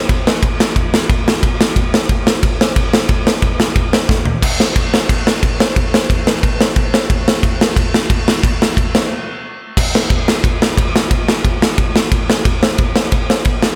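A big, up-front acoustic rock drum kit with a punchy kick, medium-tuned snare, bright crash and ride cymbals and toms drives this rebellious, rowdy punk excerpt in straight 4/4, moving through a drum fill at 4.1 seconds and a break at 9.1 seconds before the opening section returns, all washed in a moderate, lush hall reverb.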